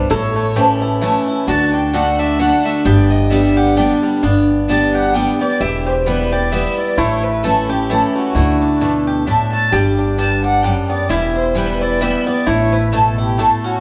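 Swinging in three, this rustic, lively bluegrass excerpt sets a dark, sul tasto fiddle and a twangy fingerpicked banjo on the melody over a full-bodied, up-front dreadnought guitar and a woody, thumpy pizzicato upright bass, while a nasal, metallic slide lap resonator guitar carries a second line and a bright mandolin adds background stabs from 0.6 s, the whole band captured live in a stone room with a wet reverb and a soft top end.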